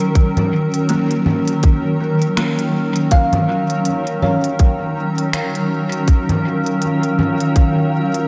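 A tight electronic kick sits up front at 81 BPM in 4/4, with a 58% swing on the sixteenths giving this ambient dub excerpt its loping gait. Around it, an organic electronic kit of congas, finger snaps and crisp hi-hats trails dub echo, its tape-softened sound re-recorded in a large room. A granular cloud pad holds a sustained Ebm7 chord throughout, blurred and slowly evolving in the foreground, while a buzzing kalimba plucked with the thumb spins woody, hollow-box arpeggios through tape echo from 0.9 to 6.0 seconds. At 6.4 seconds a breathy, wind-like tuned noise texture drifts in far behind, mellow and bathed in its own reverb. A lush hall reverb and a rolled-off top end leave the whole excerpt feeling spacious and deep in Eb minor.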